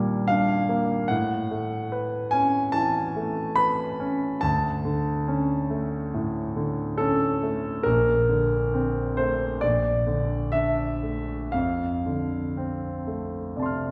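Unhurried rubato in 4/4, drifting between 57 and 76 BPM, carries this serene, luminous fragment of impressionist solo piano, cut from a longer piece and lasting 13.9 seconds. A clear concert grand with deep bass and a natural, up-front tone spans from Bb1 to F6, moving through lush colors such as Ebmaj7, Aadd9, Bbmaj9 and a closing F6. A wet scoring-stage reverb places the listener further back in the room, giving the harmonies a long, glowing halo.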